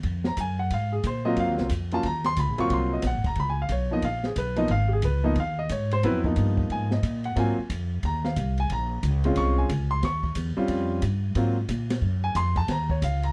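A dry, close, 1970s-style studio sound frames this playful, relaxed small-group swing and bop excerpt in Ab mixolydian at 180 BPM, where a woody, growly pizzicato upright bass sits up front alongside a warm baby grand piano comping on chords like Ab13, Ebm7 and Db13 from 0.3 seconds, while an open jazz kit with dark cymbals, a high-tuned snare and a boomy kick swings quietly underneath.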